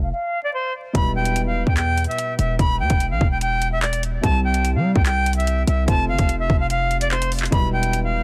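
A dense, heavily limited master with vinyl crackle and small-room ambience frames this dark, ominous half-time drill excerpt, cut from a longer piece and moving through F5, Em, C, F and back to Em. A bright, reedy silver flute carries the airy, vibrato-laden, tongued melody through a low-pass filter and tape echo, over a punchy, heavy 808-style bass whose sine tone has a noise layer, a fast attack and a decaying tail. At 0.9 seconds a soft, felt-muted upright piano adds a mellow, intimate accompaniment through its own low-pass filter, and an electronic drum kit joins with a hard-clipped kick, bright hi-hats and handclaps.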